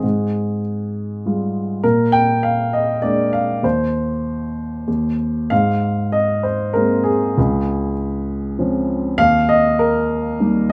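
In a 3/4 at 99 BPM, this short classical excerpt moves with a free, rubato feel, stretching and relaxing its pulse in a lyrical way. A single baby grand piano carries the whole piece from 0.0 to 10.7 s, its dark, mellow tone placed up front and spanning from Db2 up to G5. Set in Ab major, the harmony drifts from Fmadd9/Ab through Bb7 to a brief chordless moment at 3.6 s, then settles onto Abadd9, Dbmaj7 and finally Eb. Despite the piano's shadowy colour, the mood comes across as sunny and warm. A light reverb gives the room a gentle sense of space, and the passage is cut from a longer work.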